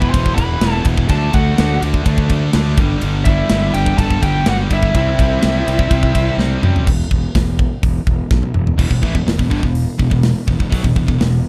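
Dark and epic, this heavy metal excerpt in E minor drives at 125 BPM in a straight 4/4, with a high-gain lead guitar carrying the melody until 6.3 seconds over a second distorted lead line, three picked rhythm guitars (crunchy and double-tracked, high-gain, and sludgy) playing a riff beneath, a growly, punchy fuzz bass up front, and a tight, polished drum kit with bright cymbals that plays fills at 6.4 and 8.3 seconds, all in a dark production with light reverb.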